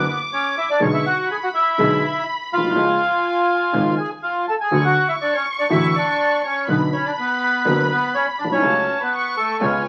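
A rubato 4/4 pulse around 123 BPM gives this short tango in F# minor a pushed and pulled, passionate, tense character, cut from a longer piece. The reedy, bright bandoneon sits up front with the melody, ranging from A3 to A5 across the full 9.9 seconds. Beneath it, a woody upright piano with a short-sustain, vintage tone carries the accompaniment, also up front, while a lush symphonic violin section adds a bowed second line high in the G#5 to D6 range, its vibrato focused and smooth on top. A clear, bowed double bass played by one player holds the low end in the background, even and smooth with its own vibrato. The harmony moves from Bm through G#dim/B, C#, and D before returning to Bm and settling on F#m/C#, and the whole sounds like a very old 78 rpm record, with vinyl crackle and a wet studio reverb around the players.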